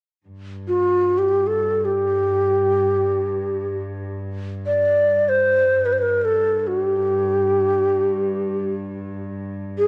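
Festive and warm, this Arabic piece in free time sets a breathy, end-blown ney up front, its reed-cane melody carrying vibrato and a crisp attack, over a rich, gut-string cello section that holds a low G drone from 0.3 seconds. The bowed cellos have a reedy, period-style chamber tone and sit well beneath the close-miked ney, and both parts carry a cassette-tape character. A lush hall reverb surrounds this home recording, which is cut from a longer piece.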